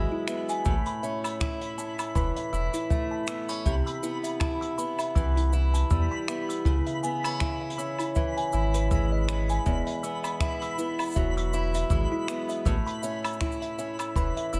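A delicate, hopeful folktronica excerpt at 80 BPM with a gentle 16th-note swing opens on a tinkling music box second line and boxy, picked archtop guitar arpeggios, both carrying tape echo, over a round, tube-saturated sub bass and a sparkling granular shimmer bathed in its own reverb, with a brushed jazz kit of cabasa, finger snaps, hi-hat and woodblock arriving at 0.3 seconds and a boomy kick at 0.7 seconds, as the chords move from Eadd9 through A, Cmaj7 and C#m in a small, lightly reverberant room.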